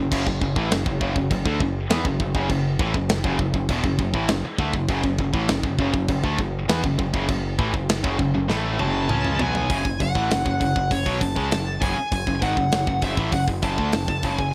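Lightly reverberant, with big-room drums sitting up front, this relentless, epic heavy metal excerpt in F# minor drives at 100 BPM in straight 4/4, as an overdriven guitar and a tightly distorted guitar, both bright and picked, churn a riff in the background over a growling, direct-and-amped bass and an acoustic kit with a tight kick, medium-tuned snare, china and crash cymbals, hi-hat and toms, while a drum fill at 8.5 seconds ushers in a warm, high-gain lead guitar melody up front from 8.8 seconds.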